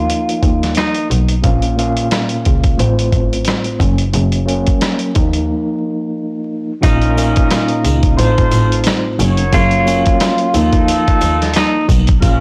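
A dusty, sampler-style boom-bap beat with a thumpy kick, medium-tuned snare, rim clicks and hi-hat swings loosely under a bowed double bass, clear and smooth with vibrato and a touch of tube saturation, in this tough, dark hip-hop excerpt. A mellow tine electric piano carries the chords up front through a cassette-tape haze, while a clean, dark electric guitar plays brief fingered melody lines with warbly pitch drift and delay, returning at 6.8 seconds after a break. At that point a distant horn section adds roomy jazz stabs and faint sleigh bells jingle in the background, all inside a blown-out, overdriven small-room sound laced with vinyl crackle.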